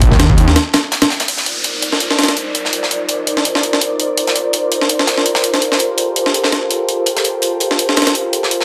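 A thick, menacing detuned saw bass hits up front on Eb2 for just the opening 0.6 seconds of the drop, before a brief break clears the way for the airy, breathy pad that enters at 1.3 seconds with chorused sustained chords moving from Cm11 to Gm11. Throughout, a gritty, pitched-up jungle sampler kit with a thumpy kick sits up front and drives this frenetic yet nostalgic 166 BPM drum and bass cut in C minor, backed in the background by a tight acoustic metal kit, while an electronic downlifter sweeps through from 1.3 to 4.2 seconds. The mix sits in a wet plate reverb under a dense, heavily limited modern master.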